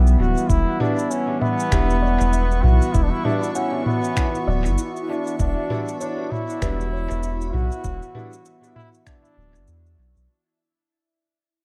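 A distant, roomy trombone with light vibrato carries the melody up front through dub echo in this spacious, deep ambient dub excerpt. Beneath it sit a round, soft sub bass with tube saturation and a smooth, detuned analog pad holding an Em7 chord through chorus. A muted felt piano plays mellow arpeggios into analog delay, a brilliant, woody upright piano adds stabs from 0.8 s, and an electronic kit of cabasa, finger snaps and toms joins a muffled, thumpy sampler-style kick, both in studio reverb; from 2.0 s a reversed, granular texture swells dreamily in the background, and the echo-heavy mix fades out from 3.8 s.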